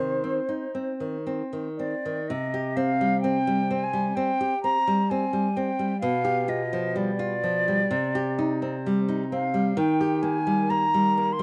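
A fingerpicked nylon-string guitar and a concert flute begin together in this melancholic, yearning romantic duo, with the bright classical guitar up front and the airy, distant flute singing an expressive, tongued melody with vibrato and a slapback echo. The flexible rubato feel lets the harmony drift from C minor through G7/B at 6.0 seconds to E-flat at 9.8 seconds. The recording has a dry, open-air sound, and it is a short cut from a longer piece.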